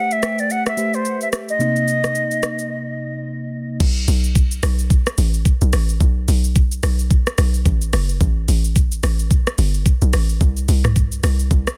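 A pure, vibrato-laced silver flute carries the melody with delay over a mellow, round FM electric piano treated with chorus on Am9 and Cm7, while a produced R&B drum kit with a knocking kick, metallic hats and a softly clipped snare falls in at 0.1 s. This soulful, deep amapiano excerpt at 109 BPM swings its 16ths, and after a break from 2.7 s the drop lands at 3.8 s on a B5 chord. There a hollow, bouncy log drum bass with a fast attack joins the drums as the flute and piano fall away, all within a dry, dense, heavily limited master that keeps each part up front.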